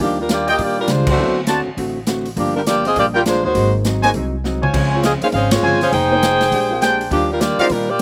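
A warm, vibrato-laden saxophone section carries the melody up front in this joyful, energetic big band swing excerpt in Eb major at 203 BPM, while a clear, tight trumpet section adds smooth-topped stabs from 0.5 seconds and the full band hits accents at 1.0 and 5.5 seconds. Underneath, a woody pizzicato upright bass and a punchy, airy drum kit drive the swing, with a drum fill at 4.4 seconds, as a dark, mellow grand piano with slapback echo drops out briefly before returning at 3.4 seconds. A clean, compressed hollow-body electric guitar sits in the background over a dry, roomless sound, with rich harmony moving from Ebmaj9 back home to Ebmaj9.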